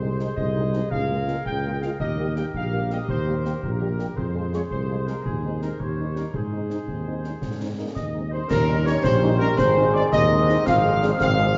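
This fragment of a spirited, festive wind-band march sounds like it was played back from a worn, warbling old cassette, with drifting pitch, a dulled top end and a wet scoring-stage reverb around the players. It moves in a straight 6/8 at 111 beats per minute to the dotted quarter, opening in Ab major and shifting to Eb major partway through. A dark, distant trumpet section carries the melody over a warm woodwind section on a second line, while French horns fill in accompaniment in the background. A mellow, soft-edged tuba sits up front on the bass, and concert snare, bass drum and clash cymbals with bright cymbals drive the march from a small room. A clear euphonium joins on a second line at 6.9 seconds, and at 8.0 seconds a pure, very quiet small flute group and a bell-like glockenspiel played with rubber mallets add further lines. From 8.5 seconds a very quiet trombone section holds sustained chords as the harmony settles on Eb7 and Ab.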